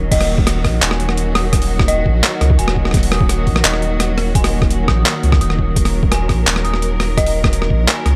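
Half-time drum and bass with a cinematic, spacious mood, this short cut from a longer piece rests on a single minor chord, with a rich, bowed string section holding sustained chords through 12-bit sampler grit and sidechain pumping while an eerie, inharmonic FM bell spins high arpeggios through chorus and tape echo. Underneath, a deep, saturated sine sub bass sustains, and a thumpy, pitched-down electronic kick sits alongside an up-front, overdriven boom bap kit of crash cymbal, handclaps, hi-hat and rim click, both re-recorded in a large room, all set in digital ambience.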